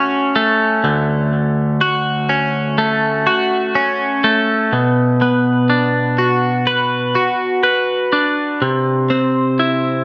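A bright, twangy twelve-string electric guitar opens this short rock fragment on its own, ringing out a Dmaj7 chord with a hopeful, cinematic feel. Its clean, picked tone is compressed and sits up front, spanning from D2 to B4 at a slow 62 BPM in a straight 4/4. A tape echo trails the guitar, and a wet, large studio reverb gives the sound a spacious, open air. At 4.7 seconds the music moves into a new section on Bm, then shifts to C at 8.6 seconds before this piece cut from a longer work ends at 10.0 seconds.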